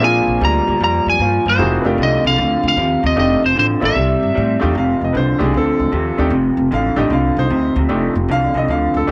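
A rollicking, laid-back electric blues shuffle in F mixolydian at 152 BPM, with swung eighths, opens with a dark, slightly broken-up lead guitar picking the melody up front, over a lo-fi, compressed riff from a guitar through a small old amp with analog chorus, thumpy pizzicato upright bass on gut strings, and a bright upright piano whose audible action noise and long sustain feel intimate in a small room with light reverb. The lead guitar stops at 4.6 s, leaving the riff, bass and piano to carry on to 9.1 s, in this section cut from a longer piece. The chords move from Bb13 and F13 to C69, returning to F13 at 4.7 s.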